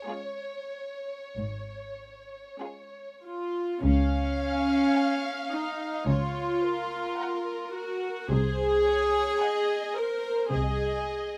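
Classical, a slow romantic movement for string orchestra in Db major, tender and warm, moving at 47-55 BPM in 4/4 with a rubato feel. Two violin sections carry the melody and a second line, the first dark and woody with vibrato, the second floating with a pure, smooth top. The violas sit up front with a rich, soft-attack accompaniment. The cellos, intimate and placed in the background with light vibrato, and the double basses join on the bass at 1.4 seconds. Every section is bowed sul tasto, and light reverb surrounds the passage, which is cut from a longer piece and moves from Db to Gb/Db at 6.1 seconds and Ab7/C at 8.3 seconds.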